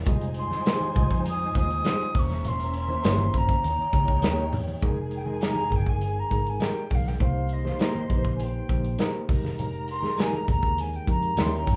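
This rough home-demo mix is fairly dry, with only a touch of studio reverb, and presents a bittersweet, cinematic slice of lush 1970s-style soul in F minor at 101 BPM in a straight 4/4. Up front, a punchy acoustic drum kit with a medium-tuned snare pumps in its studio room, while a dark, round, foam-muted fingered bass anchors the low end. A reedy electric piano, lightly overdriven and pulsing with medium tremolo through its built-in speakers, carries the accompaniment, joined by a slightly broken-up, compressed picked guitar riff sitting in the background. Distant bowed strings add lush ensemble color with vibrato and portamento, and very quiet low-tuned congas with hard hands are dusted by a grainy tube shaker that drops out after 4.8 seconds and returns at 9.6. An airy silver flute with a crisp attack and straight tone carries the melody, stepping into a solo from 4.8 seconds as the harmony shifts from Fm9, C7b9/E and Eb7 to Fm11 and Cm7.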